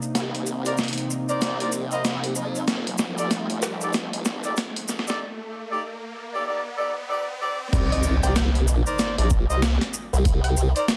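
The formant-sweep wobble bass carries the low end of this swaggering, funky glitch hop cut at 95 BPM in C dorian, a saturated, detuned, wobbling line pushed up front alongside a gritty, pitched-down boom bap kit with a high-tuned, soft-clipped snare, while close-miked horn stabs with light vibrato and tape echo pump against the groove over a smooth, warbling analog pad on Cm9 and F13 and grainy, mellow maracas. An electronic riser builds through the opening drum fill and a break from 5.2 s, then the drop lands at 7.7 s with an impact and a thumpy, compressed electronic kick, and a dark, woody wave-folded pluck melody sits in the background with chorus and tape echo. The dense, heavily limited master carries vinyl crackle and a moderate studio reverb, and the clip is cut from a longer piece.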